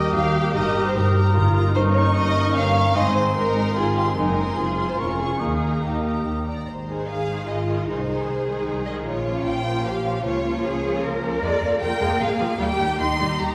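Classical orchestral music with a dramatic yet cheerful, lively character, this fast romantic movement for symphony orchestra runs at 150 BPM in 3/4 in Ab major, cut from a longer piece. A lush, vibrato-rich violin section carries the melody throughout, while a second violin line with a soft attack and smooth top sits beneath it, supported by expressive viola with portamento, a rich, somewhat distant cello section and woody double basses anchoring the bass. In the opening half a pure, hollow flute adds a tongued second line, joined in the background by a mellow cor anglais, a roomy clarinet and a smooth French horn section holding sustained chords, all falling away around 6.5 seconds. Timpani played with soft mallets give a round, barely audible presence from 3.0 to 6.0 seconds. The harmony moves from Eb through Ab and Db/F back to Eb, then in the closing stretch turns through Bbm and Bb7/F before resolving on Eb. 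A wet hall reverb gives the ensemble a spacious, concert-hall bloom.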